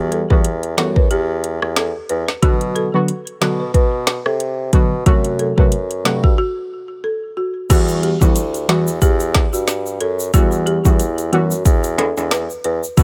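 A swung 16th-note groove at 91 BPM drives this hypnotic, bouncy dancehall excerpt in E minor, where a produced, electronic afro-pop drum kit with a deep kick, woody snare and metallic hats sits up front beside nasal, sawtooth synth brass stabs with chorus and sidechain pumping, a warm bassoon with light vibrato carries the bass, and a dry, rustic marimba with delay plays the melody over an Emadd9, Bm and F#dim progression, until a break at 6.4 seconds gives way to bright tube shaker and timbales entering at 7.7 seconds.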